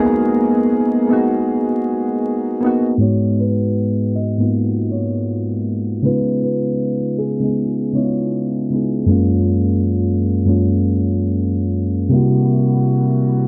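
Vinyl crackle and a low-pass filter give this lo-fi hip hop fragment a dark, warm sound, set in a small room with a moderate reverb. The mood is hazy and nostalgic, and a swung sixteenth-note feel gives it a relaxed sway. Soft, round electric-piano-like synth keys sit up front throughout, carrying the accompaniment with chorus and a cassette-tape colour, and a filter sweep runs over them from 3.0 seconds onward. A detuned sawtooth analog pad hovers airily in the background under chorus for the opening stretch, then gives way at 3.0 seconds to a felt-muted upright piano. The piano's mellow, intimate melody lasts until 9.0 seconds. The harmony moves through lush extended chords, from G#m9 and C#9 to F#maj9 before settling on C7#11, in a passage cut from a longer piece.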